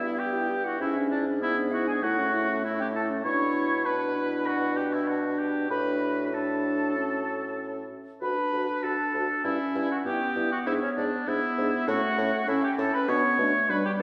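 A quick, cheerful classical-period movement for wind quintet at 98 BPM in 4/4, this spirited excerpt has an airy concert flute carrying the melody from the background with a crisp attack and straight tone, while a warm oboe sits up front on the second line with light vibrato and a soft attack. A clear clarinet and a mellow, smooth-topped French horn fill out the accompaniment, and a present bassoon anchors the bass, all playing throughout the 14 seconds. The ensemble is heard from further back in a wet scoring stage, with a reverb that lingers around 1.9 seconds over harmony that moves from Em/G through E7/G# to A and ends on G/B.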